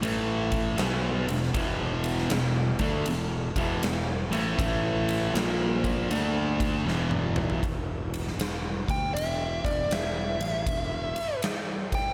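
A gritty, heavy slice of blues rock and southern rock opens with a bright, double-tracked fuzz guitar riff played up front over a growly, overdriven fingered bass and a huge arena drum kit with a punchy kick, medium-tuned snare, ride cymbal and toms. The groove sits in a slow, swung four, and the guitar, bass and drums start together. A drum fill leads to the riff dropping away at 7.6 seconds, leaving the bass and the kit to carry on. At 8.9 seconds a dark, smooth lead guitar enters high and up front, its overdrive trailed by tape echo. A lush hall reverb gives the whole trio a big arena sound.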